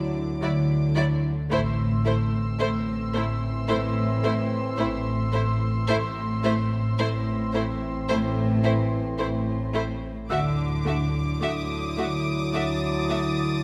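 Sul tasto violins carry the melody in a rich, intimate tone with light vibrato through this mysterious, uneasy stretch of suspense film score, a short cut from a longer cue at a slow, straight pace. A second violin section adds a floating, pure line beneath it, while violas sit in the background with soft-attack accompaniment. Cellos and double basses, both dark and bowed sul tasto, hold the low end, the basses carrying a woody edge and fuller vibrato. A mellow French horn section sustains tight chords, and a marimba with soft mallets plays a round, dry riff low in the mix. High up, a clear violin section adds a pure, floating texture, and a ringing concert harp touches in at the start and returns from 10.3 seconds as the harmony moves from Dadd9 to a long stretch of Am and back to Dadd9. Moderate scoring stage reverb gives the ensemble a sense of space.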